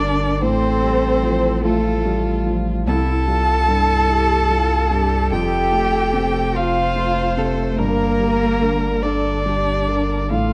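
A single violin carries the melody up front with a smooth, lightly vibrato-touched tone, while a focused, distant-sounding cello sings a second line beneath it in this tender, intimate neoclassical passage in F major, drifting freely at 49 BPM in 6/8. A soft, felt-muted upright piano supplies mellow accompaniment, its action noise audible, alongside a smooth, even bowed viola with vibrato, and a deep, punchy sine sub bass with a pitch-drop attack anchors the low end. The chords move from Fadd9/A through C and Fadd9 to Gm, and the dark, warm production with light reverb keeps this excerpt of a longer piece close and hushed.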